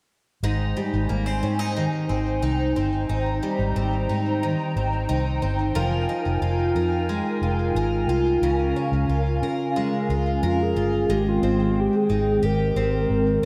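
Dream pop with a floating, ethereal mood, cut from a longer piece: a bright, shimmering twelve-string acoustic guitar plays arpeggios up front through subtle chorus and digital delay, beside a dark, round, foam-muted electric bass, while a flute-like, warbling pad holds sustained chords under an ensemble chorus. At 10.5 seconds a woody, clarinet-like synth lead enters with a mellow melody, colored by chorus, phaser, digital delay and vibrato. A lush hall reverb surrounds the parts as the chords move from Abmaj7 through Fm11 and Db6, returning to Abmaj7 at 11.1 seconds.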